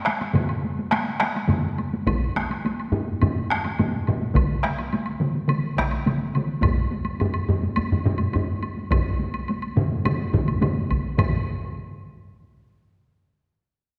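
Heavy-stick taiko drums lead this powerful, driving Japanese traditional ensemble excerpt at 105 BPM in a straight 4/4. One up-front drum has a vintage, band-limited tone and a second sits in a live room, joined by a close, dry hard-stick taiko and a woody, dry woodblock from the start, while a small-room taiko group enters at 2.1 seconds. The whole performance rings out in a concert hall reverb with a 1.8-second decay.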